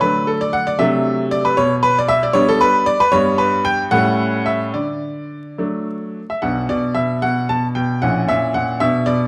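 A brilliant, natural-sounding baby grand piano sits up front and carries this graceful, cheerful classical-period sonatina entirely on its own, its tone bright and its notes ringing with long sustain across a range from A#1 to A5. The music moves in 6/8 at roughly 71-78 BPM counted in dotted quarters, played with rubato in D major. The opening passage moves from D through D7/C, G/B, G and A7 before settling back on D. At 6.4 seconds a contrasting passage turns toward B minor and reaches F#7/A# at 8.0 seconds. Moderate recital hall reverb surrounds the instrument, while the overall production leans dark and warm, with a bed of vinyl crackle, in this 9.3-second excerpt cut from a longer piece.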